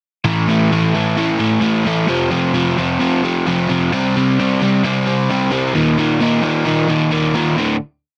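A dense, heavily limited modern master with light reverb frames this brief rock piece, which runs just over eight seconds. A single crunchy overdriven electric guitar carries everything on its own, bright and picked, double-tracked and placed up front as it drives straight eighth-note power chords in 4/4. The mood is restless and bittersweet, moving through A5, F5, C5 and Eb5 across what plays like a pre-chorus from 0.2 seconds. The guitar's gritty bite stays low to mid in register, spanning D2 to C4. At 7.6 seconds it settles onto a final D5 chord that closes the piece.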